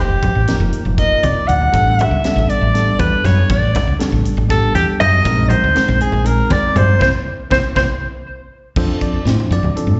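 Electric jazz fusion in 7/8 at 239 BPM, soaring and funky, led up front by a breathy, mellow soprano saxophone with vibrato, subtone and slapback echo plus analog delay that plays until 7.8 s, over bell-like tine electric piano with its own slapback echo, a round, woody fretless bass, ringing low-tuned congas set in the background and a tight funk drum kit with a high-tuned snare, moving through F9sus4, A9sus4 and Bb9sus4 to a band accent on C7 at 7.0 s and a drum fill from 7.3 s before an electric piano fill leads into F6 at 8.8 s, all caught live through the venue's PA in a recital hall with a muffled top end.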